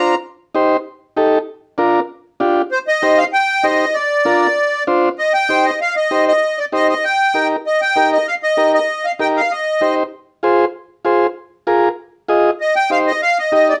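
An overdriven vintage combo organ opens this passionate, fiery Latin fragment with up-front accompaniment, while a sweet accordion with light tremolo tuning sounds for an instant before taking the melody at 2.7 seconds. The accordion sits close in a boxy small room, and its high lines ride over chords that move from minor to major colour as the piece shifts into its second section at 5.2 seconds. A moderate studio reverb gives the pair a touch of space before the accordion returns briefly at 12.6 seconds, as the music is cut from a longer piece.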